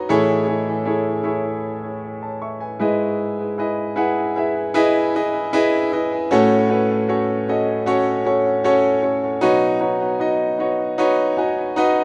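A warm, polished grand piano sits up front and plays alone throughout this tender, hopeful pop excerpt in E major, moving at 77 BPM in a straight 4/4 and tuned to A4 = 442 Hz. Analog delay colours the piano as it moves through Amaj7, Emaj7/G#, F#m/A and Badd9, spanning G#2 to C#6, before a short fill at 11.0 seconds. Light reverb and a small-room ambience surround the rough home-demo mix.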